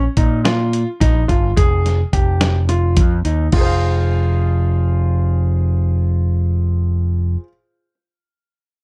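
Set in a straight 7/8 at 214 BPM counted in eighths, this brief progressive instrumental, cut from a longer piece, has a brooding, intricate feel in F minor. An overdriven, picked electric bass sits up front with a round, punchy, amped tone, anchoring the low end while a clear concert grand piano plays arpeggios above it with a natural sound and deep bass. A dusty soul sampler-style drum kit, compressed and gritty with a thumpy kick, a medium-tuned snare, hi-hat and crash, enters at 0.2 seconds and drops out at 3.7 seconds. The bass and piano carry on alone into the second section, with the piano ringing until 7.5 seconds. The harmony moves from Bb5 to Fm7 and settles on Fm. The production is dark and dry, with little reverb.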